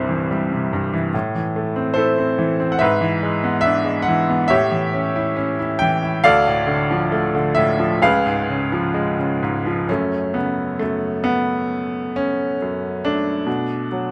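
This classical piece for solo piano has a wistful, reflective mood and unfolds with a flexible rubato feel in 4/4, moving at roughly 63-74 BPM. A bright baby grand piano carries everything alone from 0.0 to 14.1 seconds, ranging from C2 to G5 with a brilliant, intimate tone, long sustain and audible action noise. The harmony wanders from C through Am, E7/G#, A7, Dm and C#7 before settling into F# minor at 9.9 seconds, where a new section begins on F#m and reaches B5 near the close. Close, detailed microphones place the piano up front, with light reverb adding a touch of space. The recording is cut from a longer piece.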